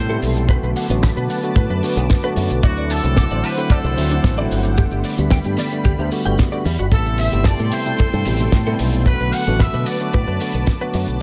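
Nu-disco at 112 BPM with a sensual, groovy feel, built on a punchy, up-front fingered electric bass through an envelope filter and a tight, dry kick that sits forward with a fat-snared, damped 70s kit carrying hi-hat, ride, shaker and snare. A bell-like tine electric piano with sidechain pumping and delay, a lush detuned unison pad with chorus and phaser, and a clean, compressed direct guitar riff in the background move through Bm7, D7, Gmaj7 and Am7, while a barely audible downlifter passes in the first 2.6 seconds. Over this a distant, nasal muted trumpet section with light vibrato carries the melody through tape echo, and the piece fades out from 9.8 seconds.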